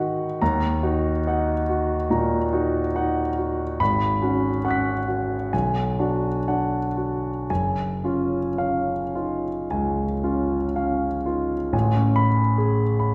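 Rubato phrasing in 4/4 drifts between 53 and 72 BPM in this dreamy, luminous impressionist solo piano passage in F# major, cut from a longer piece. A concert grand with deep bass, long sustain and audible action noise spans F#1 to B6, sounding intimate and polished up front while a wet recital hall reverb places the listener further back in the room. Harmonies move through D#m, G#m7, Bm6 and F#sus2 before a new section opens on Amaj9 at 11.7 seconds.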